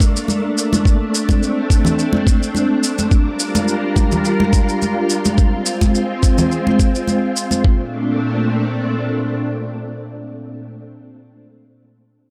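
A silky, warbling string machine with ensemble chorus holds mellow sustained chords through Bbmaj9, Gm7 and Ab6 in this sunny, blissful sunset chillout excerpt at 106 BPM with a gentle 16th-note swing, riding over an up-front, thumpy sampled kick, a gritty compressed shaker and hard-hand acoustic congas that drop away between 7.6 and 7.8 seconds, leaving the strings alone in light digital ambience until 10.7 seconds on a dry, gritty hardware recording.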